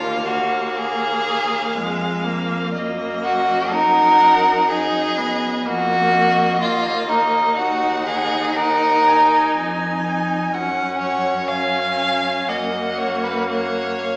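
A string quartet opens together at 0.0 seconds in a slow, rubato romantic movement in Eb minor at 61 BPM in 4/4, solemn and elegiac in mood. The first violin carries the melody between Eb5 and Ab5 with a warm, expressive tone, soft attacks, vibrato and portamento, yet it sits lower in the mix than the second violin. That second violin, focused and up front though somewhat distant in character, spins a clear second line from Eb4 to F5. Beneath them the viola supplies smooth, even accompaniment between Ab3 and Eb4, while the cello, close and steady, holds the bass low between Eb2 and Gb2, each single player bowing with vibrato. The harmony moves from Bb7(no3)/Eb through Ebm/Gb and Ebm before settling on Gb near 12.5 seconds, all wrapped in a wet recital hall reverb, with the church or concert hall recording carrying a small-speaker sound, in a passage cut from a longer piece that runs to 14.2 seconds.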